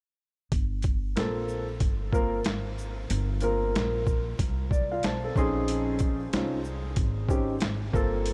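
Soaked in a huge ambient reverb that gives the mix a dreamy haze, this nocturnal, cool jazz-hop excerpt sets a gritty, overdriven, pitched-down boom bap kit with a thumpy kick, high-tuned snare, hi-hat and shaker alongside a woody pizzicato upright bass from 0.5 s, while a dark, mellow grand piano with audible action noise joins at 1.2 s and plays a fill from 4.4 s as the harmony moves from Gm11 to Bbm11.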